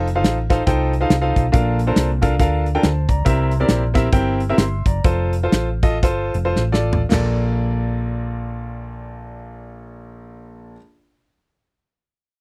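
A punchy, up-front acoustic drum kit with china cymbal, hi-hat, snare and toms drives this reverent, soulful uptempo gospel excerpt in Bb major, swinging at 104-140 BPM before slowing from 3.3 seconds into a drum fill at 6.6 seconds, the kit dropping out at 7.3 seconds, while an intimate grand piano, its action noise audible, and a dark, round hollow-body electric bass carry on together through a dry, close 1970s-style studio sound.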